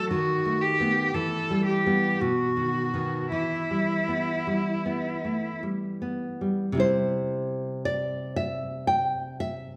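In this melancholic, solemn excerpt of a romantic duo in a slow, rubato triple metre, a rich, bowed cello sings a focused, vibrato melody over a full-bodied, fingerpicked nylon-string guitar with audible finger squeak, moving through minor and dominant chords before the cello stops at 5.6 s and the guitar carries on alone into a new passage on a C chord at 6.8 s, all set in a church or concert hall with lush, reverberant recital-hall ambience.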